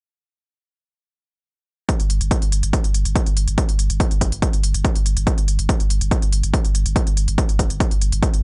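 A dry, close sound with a dark top end frames this short cut from a longer piece of driving peak-time techno, running at 142 BPM in a straight 4/4 with a hypnotic, intense mood. The electronic kick drum enters at 1.9 seconds, punchy, layered and up front, with a small-room character. Electronic hi-hats join it at the same moment, smooth and layered, sitting lower in the mix and pumping through sidechain compression. At 2.0 seconds a saturated sub bass arrives around G1, a deep, thick sine tone with a fast attack and long sustain, darkened by a low-pass filter and also pumping with the sidechain. The three parts hold a single relentless groove through to 8.4 seconds.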